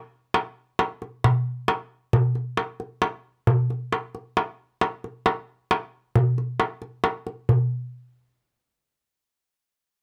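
Reflective and melancholic, this short cut from a longer Greek folk piece in a straight 9/8 features a solo darbuka with a crisp, saturated metal-shell sound, struck with hard hands and placed up front in a dry, close 1970s-style studio recording with light reverb, playing from 0.3 to 7.9 seconds.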